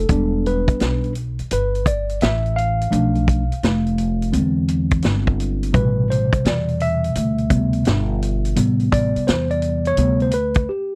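A worn, slightly out-of-tune tine electric piano takes the lead, soloing across this short, mellow and smoky jazz-hop cut over a swung sixteenth-note groove and a minor-key progression that moves from Em7 through Bm7b5 and E7alt to Am9. Beneath it, a woody pizzicato upright bass and a vintage acoustic kit with a punchy kick, medium-tuned snare, hi-hat and a rolled-off top sit up front. The dry, close 1970s-style studio sound holds until a break at 10.7 seconds.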